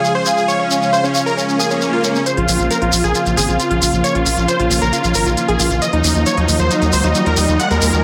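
A huge, detuned supersaw lead carries the melody in this emotional, euphoric uplifting trance excerpt at 135 BPM in Bb minor, roughened by vintage 12-bit sampler grit, a low-pass filter and dub echo. Alongside it, a velvety, chorused second lead with vibrato and cassette-tape coloring holds F5 until 2.2 seconds, over a lush, thick pad of sustained chords and a grainy, close shekere. A background swell and riser enters at 1.6 seconds. At 2.3 seconds a build-up begins on Bbmadd9, moving to Ebmadd9, as smooth electronic hi-hats arrive, joined by a gritty, nasal driven synth bass up front, all set in a moderate digital room reverb.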